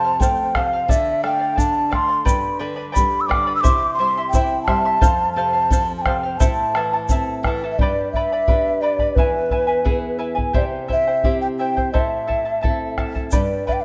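A mellow, hollow wooden quena leads this Andean folk excerpt in a straight two-beat metre, its airy, tongued melody carrying vibrato over shimmering double-string charango and a fingerpicked classical nylon-string guitar with an audible finger squeak. A deep, dark bombo sits up front from 0.2 s, joined by a grainy egg shaker that drops out at 7.2 s and returns only briefly near the close, as the mood blends festive and melancholic across two sections. A lush hall reverb surrounds the rough, home-demo mix.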